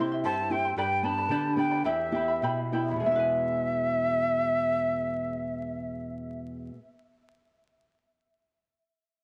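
An airy, end-blown cane quena carries the wistful melody up front, tongued and expressive with vibrato, entering at 0.2 seconds over fingerpicked accompaniment in this earthy Andean folk excerpt in 2/4 at 92-115 BPM. A shimmering, double-strung charango, washed in plate reverb, and a small, close nylon-string guitar fingerpick beneath it through C, G and Em, the pulse slowing from 0.8 to 3.0 seconds before the harmony shifts to E. The dark production adds vinyl crackle and a wet studio room.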